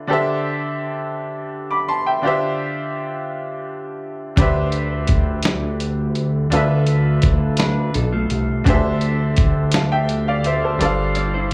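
Heard through a club PA with light reverb and the murmur of the room around it, this brief cut from a longer piece is a slow six-eight R&B groove with a yearning, late-night mood. A bright, brilliant baby grand piano opens alone, its chords of D13sus4 and Dm11 ringing through plate reverb and a slapback echo. At 4.4 seconds a dusty, sampler-style drum kit and a fat analog bass come in together, the gritty, compressed drums offering a thumpy kick, a medium-tuned snare and hi-hat with a tape-warm tint. The bass sits low and up front, thick and saturated with a filter pluck and a mellow sustain. From 7.6 seconds a clean, dark electric guitar adds a quieter second line, fingered and compressed, bathed in spring reverb, tape echo and plate reverb as the harmony moves through Dm13 and Dm11 to a closing G9sus4.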